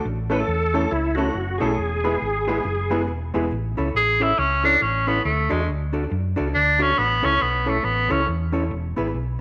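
A clear, vintage-toned tenor saxophone takes the solo from 4.0 s to 8.3 s with scooped notes, lifting this upbeat, joyful ska excerpt in A major at 139 BPM, swung on the eighths. Before it, a bright, reedy tonewheel organ with light overdrive, chorus vibrato, key click and slow rotary speaker carries the melody up front, alongside woody, slightly detuned upright piano stabs with audible action noise. Underneath, a round, punchy hollow-body bass and a dark, clean hollow-body jazz guitar with slapback echo keep going throughout, all set in a wet echo-chamber reverb.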